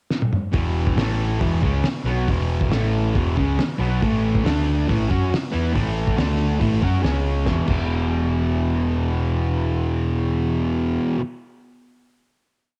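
A cloth-damped, thuddy drum kit opens with a fill at 0.1 seconds, its fat snare, tight kick and dark, muffled cymbals carrying a gritty 12-bit sampler crunch and cassette saturation, before a rowdy, swaggering garage rock stomp takes off at 138 BPM in E major. A bright, double-tracked fuzz guitar sits up front with a compressed power-chord riff, while a round, amped electric bass drives eighth notes with overdrive, doubling the riff. The drums drop out at 7.8 seconds, leaving guitar and bass to ring a final E5 chord, the bass fading at 11.0 seconds and the guitar holding through 11.2 seconds, in a small, lightly reverberant room on lo-fi home-cassette tape.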